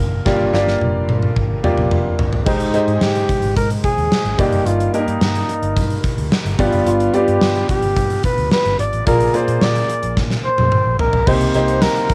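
A straight 4/4 pulse at 109 BPM drives this urgent, nostalgic 1980s-style pop excerpt, with a gated drum kit of punchy kick, medium-tuned snare, bright cymbals, tambourine and toms opening on a fill from 0.3 seconds while a round, foam-muted fingered electric bass and a clear, up-front concert grand piano with deep bass and cassette-tape plate reverb lay down chords moving from Gm7 through Abmaj7, Ebmaj7, G7 and Bb7 to Cm7. At 2.5 seconds a solo flugelhorn enters with the melody, pop-styled with light vibrato and carrying the same cassette-tape plate reverb, and a second drum fill arrives at 10.2 seconds. The whole sits in a short, wet booth ambience with the character of a home cassette recording.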